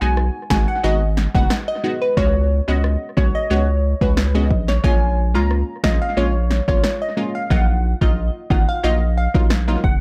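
Dancehall at 90 BPM in Eb minor, this tough, hypnotic cut from a longer piece moves through Abm7, Db7sus4, Bbm7 and Ebmadd9 over a deep, saturated sine sub bass and a punchy, layered deep house drum kit of kick, rim click and snare that enters at 0.2 seconds, both sitting up front. Above them, a bright, detuned sawtooth chord stab with chorus and a moving notch filter supplies short, punchy accompaniment. A glassy, crystalline wavetable pluck carries the melody through chorus and analog delay, all set in an echo-heavy digital ambience.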